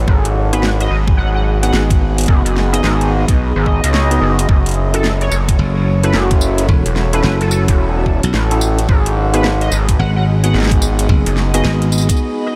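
A gritty, saturated synth bass and a blurred granular cloud pad, its built-in reverb and sidechain pumping set in the background, open this playful glitch hop clip at 109 BPM with a swung 16th-note feel, moving between G#m7 and F#m7. A knocking electronic kick and a dubstep kit of metallic hi-hats, rim click, huge snare and tambourine arrive almost at once, joined by an edgy, tearing sync lead with chorus and tape echo and bell-like electric piano stabs roughened by 12-bit sampler grit. At 5.6 seconds a bright, growly slap bass joins up front, and a brief break lands at 12.2 seconds.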